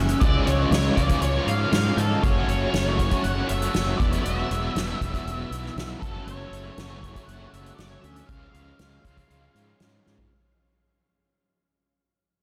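Soaked in a huge, dreamy ambient reverb, this trippy, mysterious psychedelic rock fragment fades out throughout, with a double-tracked overdriven guitar riff with tremolo over growly fuzz bass and a boomy, up-front soft-mallet drum kit, while a dark octave-fuzz lead guitar carries the melody through wah, distortion and delay, a buzzy vintage combo organ enters very quietly at 2.2 seconds with sustained chords, and the drums close on a fill at 10.1 seconds.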